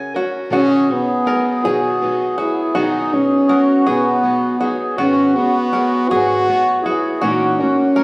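Acoustic folk for a duo or small band, this short excerpt cut from a longer piece feels nostalgic and peaceful, unfolding in a gently rolling 6/8. A French horn carries the melody from 0.5 seconds, sitting up front with a close-miked, classical character and a warm, solo voice. Beneath it, a mellow accordion plays a reedy second line with slow beating and a mid-forward presence, while a picked steel-string acoustic guitar supplies dark accompaniment, its finger squeak faintly audible. A bluegrass banjo, played with fingerpicks, adds twangy, percussive arpeggios in a narrow range. The harmony moves from an F# chord over C# to B6, settling on G#m7 at 5.0 seconds before an F#7 over A#, all heard from further back in a large, wet studio room.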